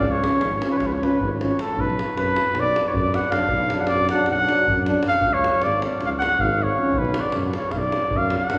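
A mellow cornet solos up front across this bittersweet, fiery Balkan brass band excerpt in 9/8, backed by a close-miked warm trombone in the background, a dark tuba on bass, a deep acoustic davul and a very quiet, distant euphonium with light vibrato entering at 0.2 seconds, all moving between C# and Bm chords in a wet church reverb.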